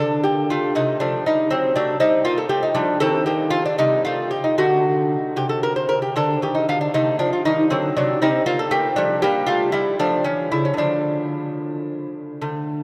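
In a 6/8 with a rubato feel, the dotted-quarter pulse drifts between 72 and 82 BPM in this grave, solemn baroque-style dance, cut from a longer piece. A solo lute, bright and delicate, is fingerpicked up front on gut double strings, some doubled at the octave, and ranges from C3 to C5 through shifting harmonies like Dmadd11, F#dim7 and Gm13 before settling into D minor from 9.2 s. A cathedral reverb with a 4.9-second decay casts the playing into a vast, echoing space.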